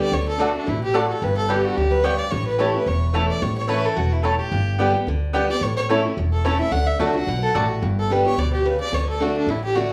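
A rich, nasal fiddle carries the melody with a biting, airy bow and a touch of tape echo over a joyful, rustic bluegrass groove in D major at 218 BPM with a light swing, backed by picked parlour acoustic guitar, a growly, thumpy upright bass up front, woody double-strung mandolin stabs that drop out at 7.7 seconds, and a clear second fiddle that slips in briefly from 3.7 seconds, all in a small, reverberant room.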